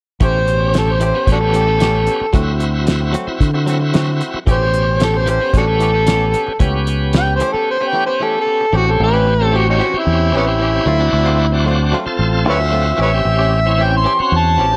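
A gritty, overdriven harmonica leads this laid-back, soulful straight-eighth soul blues in A mixolydian at 113 BPM, sitting up front with tongue slaps, scooped notes, a light vibrato and a jazz-inflected solo voice. Behind it, a bright tonewheel organ shouts out full chords with audible key click, light overdrive and a slow rotary speaker. A clean, twangy electric guitar, recorded direct and compressed, adds picked stabs in the background through a vibrato effect and tape echo. A round, fingered electric bass holds the low end up front, while a cloth-damped, thuddy drum kit with a fat snare, tight kick and rolled-off top keeps a dry groove until 7.5 seconds. The harmony moves between A7 and D7, then shifts to A7#9 and D7#9 chords from 8.7 seconds, all in light reverb, in this excerpt cut from a longer piece.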